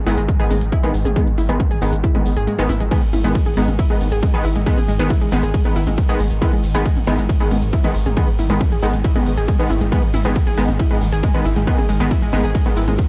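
Driving and relentless, this is a slice of peak-time techno at 137 BPM in straight 4/4, sitting on G# minor throughout. A heavy, tape-warm electronic kick sits up front and thumps from 0.3 seconds, dropping out briefly between 2.5 and 2.9 seconds before returning. Beneath it a thick, saturated sine sub bass holds G#1 with sidechain pumping and a low-pass filter, while a very quiet, swarming granular drone hums tensely in the background. A warbling, lo-fi pluck built from detuned pulse and sawtooth waves carries the riff, dark and dusty with chorus, analog delay and a filter sweep. Aggressive, detuned rave stabs with ring modulation cut in with chorus, reverb and delay, and a layered drum kit of smooth hats, ride, shaker and toms pumps against the kick. The sound is dry and gritty, a hardware recording with little reverb.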